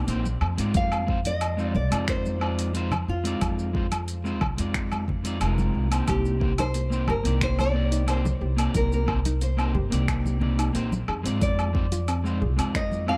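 Relaxed and warm, this sunset chillout cut moves at 90 BPM in 4/4 over Fm7 and Cm7 chords. A woody, thumpy pizzicato upright bass sits up front beside a deep, tape-tinged electronic kick, while a deep house kit of finger snaps, hi-hat, shaker and woodblock and bright congas in the background fill out the groove, and a dark, slightly broken-up electric guitar with delay supplies fingered accompaniment. A small fingerpicked nylon-string guitar carries the melody through tape echo, and from 6.4 seconds a soft, round, warbling vintage pluck adds background arpeggios with chorus and delay, set in a dark production with light reverb.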